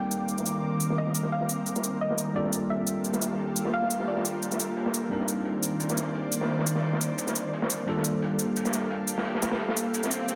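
A soft, round pluck melody with lush chorus and tape echo opens this lush, melancholic liquid drum and bass excerpt at 174 BPM in C minor, over a clean tine electric piano and an ethereal, airy pad whose slow-attack detuned chords sit up front while the harmony moves between Cm9 and Gm9. A crunchy breakbeat kit, gritty and saturated with a rolled-off top and filtered hi-hat and snare in a small room, joins an up-front layered electronic shaker at 0.1 seconds, with a gentle swing on the 16ths. The pluck ends at 4.9 seconds, and an electronic swell arrives at 10.1 seconds inside a dense, heavily limited mix bathed in a lush hall reverb.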